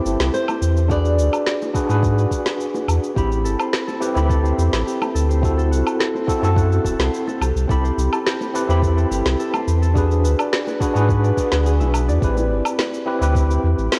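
A soft, tape-warm electronic kick joins at 0.9 s beneath a straight groove of electronic cabasa, woody snare and woodblock, while round, low-tuned bongos played with soft hands sit in the background of this relaxed, smooth sunset chillout excerpt. A deep, sine-toned sub bass with tube saturation stays up front beside a worn, slightly out-of-tune tine electric piano, lightly overdriven as if heard through built-in speakers, with tape echo and shimmer reverb as it moves from Am7 through E7 and D7. A fingerpicked flamenco guitar with fresh strings offers a brief melody through cassette tape, analog delay and shimmer reverb, ending at 2.0 s, and a ringing concert harp takes up arpeggios from 3.2 s, set in a light, small-room home cassette sound.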